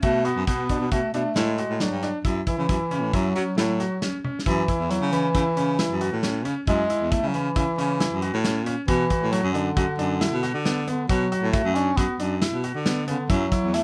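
A moderate small-room reverb gives this tense, driving progressive instrumental a close, roomy sound, moving at 136 BPM in 5/4 with a straight feel in F# minor. A clear, present bass clarinet carries the melody up front over a bright grand piano's arpeggios, which have audible action noise and long sustain. A breathy, whispered baritone saxophone with vibrato holds the bass, and a loose indie drum kit adds a punchy kick and a rolled-off top. After a drum fill at 4.2 seconds, the bass clarinet takes a solo from 4.5 seconds to the end of this cut, while the harmony, having opened on Bm7 and F#m7, moves on to Bm.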